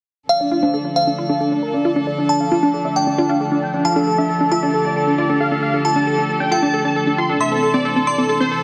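A dense, heavily limited modern master sits in a lush hall reverb, carrying a euphoric, soaring trance passage at 135 BPM in D minor, tuned to A4 = 435 Hz and cut from a longer piece. Huge, detuned supersaw chords lead the melody up front with a filter sweep and delay, while a glassy, warbling FM bell adds a crystalline second line through chorus and digital delay. Beneath them, a punchy, wave-folded unison pluck runs arpeggios under its own filter sweep from 0.4 seconds, and a reedy chamber string section holds gut-string chords with light vibrato and vintage 12-bit grit, the harmony moving from Dm to Am at 7.4 seconds.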